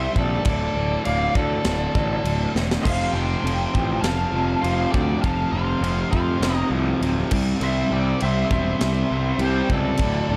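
Hard rock excerpt with a heavy, driving feel, where a lo-fi lead guitar through a small cranked amp carries the melody over a darker octave-fuzz second line, two distorted electric guitars play the riff in the background (the second, warmer one joining at 2.8 seconds), an up-front, growly fuzz bass drives underneath, and a tight metal drum kit with bright cymbals and a high-tuned snare fires a fill at 2.6 seconds, all in a small room with light reverb.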